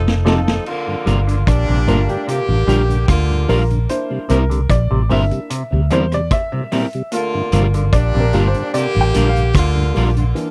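Laid-back and hypnotic, this roots reggae excerpt opens with a drum fill and band accent before the woody upright piano takes a solo from 0.7 seconds over a round, foam-muted fingered electric bass and a gritty, dark-cymbaled vintage drum kit that sit up front. Around them, a punchy horn section with light vibrato and tape echo, a stringy clav with phaser playing arpeggios, a slightly broken-up electric guitar with subtle chorus, and a mellow tonewheel organ turning through a slow rotary speaker in the background fill out the groove. The sound is a dry, close 1970s-style studio recording, moving from F7 to a Gm7 and C7 vamp.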